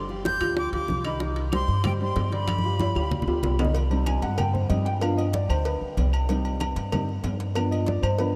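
A boxy upright piano with analog chorus and a dark, thumpy gut-string upright bass open this passionate, danceable salsa excerpt in C harmonic minor at 189 BPM, quickly joined by ringing congas, round low-tuned bongos and cowbell, metal-shell timbales with agogo bells, and woody claves in the background. A breathy, bright silver concert flute with vibrato and an unsteady delay-tinged line carries the melody until 3.4 seconds, while a drum fill from 2.5 seconds leads into a piano solo over alternating C minor and G7 chords from 3.8 seconds. A huge ambient reverb soaks the mix in a dreamy haze.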